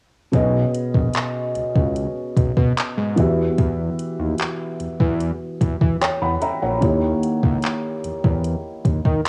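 At 0.3 s a felt-muted upright piano, a fat analog bass and a smooth electronic R&B kit of soft kick, metallic hi-hats and handclaps come in together, setting a romantic, smooth contemporary R&B groove at 74 BPM in B major. The piano sounds dark and intimate with audible action noise and a cassette-tape tint, while the thick, detuned sawtooth bass evolves under a filter sweep, all three sitting up front in light reverb and studio ambience. The chords move from B69 to Emadd9 to D#7b9 across this short cut from a longer piece.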